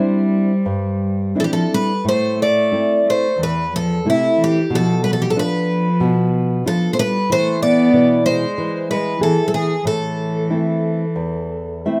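A mournful, longing fado-style ballad opens with a shimmering, octave-doubled twelve-string guitar carrying the melody up front, a dark, reedy bowed cello tracing a second line in its period-style gut-string tone, and a thumb-plucked classical nylon-string guitar accompanying close by. The pulse sits around 92 BPM in 4/4 but moves with uneven, rubato beats in A minor, passing from Cadd9 through Am, Bdim and E before returning to Am, while finger squeaks on the picked twelve-string add intimacy. A moderate studio reverb surrounds the trio, and the nylon-string guitar slips in a brief fill at 11.5 seconds before this excerpt cuts off.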